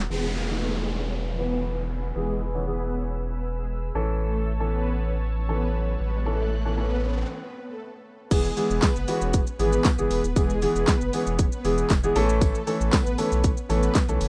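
Dance-pop in E major at 117 BPM, euphoric and upbeat, this fragment opens with a lush, detuned sawtooth pad, a deep round sub bass and a clear baby grand piano all pumping under a filter sweep while electronic downlifter and riser effects build through a riser from 5.3 s and a break at 7.3 s, until the drop at 8.3 s brings in a punchy, fat-snared pop drum kit with handclaps, shaker and crash plus a jingly, very quiet tambourine over E and A chords in a dry, rough home-demo mix.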